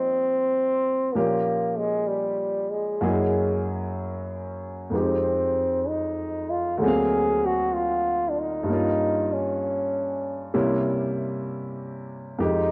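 A smoky, intimate jazz ballad at a slow, swung 64 BPM in 4/4, cut from a longer piece, in which a cup-muted trombone carries a breathy, veiled solo melody up front while a smooth, warm grand piano accompanies through rich chords such as Bb69, Gb9 and D7alt, all heard as a vintage home cassette recording with a dull, rolled-off top and a moderate spring reverb.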